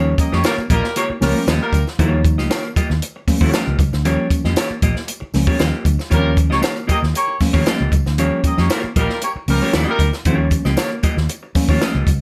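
A tight, up-front cocktail drum kit with a high-tuned snare drives this energetic, funky 116 BPM excerpt on an Eb9 chord, joined by a dark, foam-muted fingered electric bass, clean hollow-body guitar accompaniment, worn, slightly out-of-tune electric piano stabs, a clear horn section playing a second line at 0.2 s and again at 6.1 s, plus bright, damped congas and a jingly tambourine in the background, all in light reverb.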